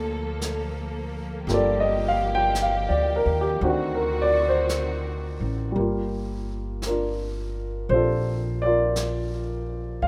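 This jazz ballad fragment moves at a slow 56 BPM in 4/4 with a swung eighth-note feel, settling into a melancholic, wistful mood in G minor. An upright piano, woody and polished, sits up front carrying the accompaniment across the whole clip. Alongside it from the start plays a pizzicato upright bass with steel strings, also up front. A lush bowed string section holds smooth, vibrato-tinged chords beneath them until about 5.7 seconds. A brushed drum kit with a medium-tuned snare and hi-hat enters softly at 0.4 seconds, sounding natural in a studio room. The harmony moves from Gm9 to D7b9 and back to Gm9, and the whole thing has a rough home-demo mix with little reverb.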